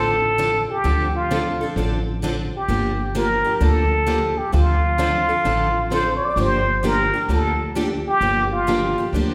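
A plunger-muted trumpet leads this bittersweet, virtuosic jazz manouche excerpt in D minor, its clear, vintage wah-wah tone and scooped notes sitting up front over a swung 130 BPM pulse in 4/4. Beneath it, a bright, boxy parlour guitar and a darker plugged-in acoustic guitar with audible finger squeak pick out the accompaniment, while a woody, thumpy pizzicato upright bass on gut strings anchors the Dm7 to Gm7 changes. The whole 9.3-second excerpt is cut from a longer piece and rings in the lush reverb of a church or concert hall.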